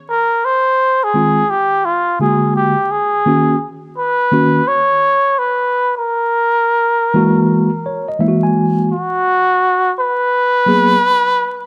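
Vinyl crackle and light, small-room reverb frame this hip hop excerpt at 85 BPM, its 16ths swung in 4/4 with a warm yet cool mood. A cup-muted trumpet carries the jazz-style solo melody up front, breathy and veiled with vibrato and soft attacks, close-miked and intimate. Beneath it, a mellow, clean tine electric piano, heard as if through its built-in speakers, accompanies from 1.1 s and adds a fill from 7.5 s before the harmony shifts to G#m9 at 8.9 s.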